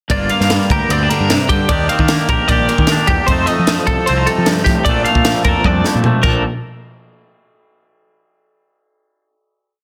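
The recording has a dense, heavily limited modern sound, set in a moderate studio reverb. This short, complete math rock and midwest emo piece feels wistful yet bright in a straight 4/4. Up front, a clean, twangy electric guitar plays syncopated fingerstyle accompaniment, bathed in plate reverb. Above it, a chiming twelve-string electric guitar repeats an arpeggiated ostinato with tremolo and the same plate reverb. Underneath, a fuzz-drenched picked bass drives a punchy, syncopated riff, while a crisp fusion kit with a high-tuned snare and tight kick breaks up the groove in a small, pumping room. The band cycles through Gm7, Ebmaj7, F7 and Bbmaj7, and a drum fill from 5.7 seconds leads to a final hit at 6.4 seconds.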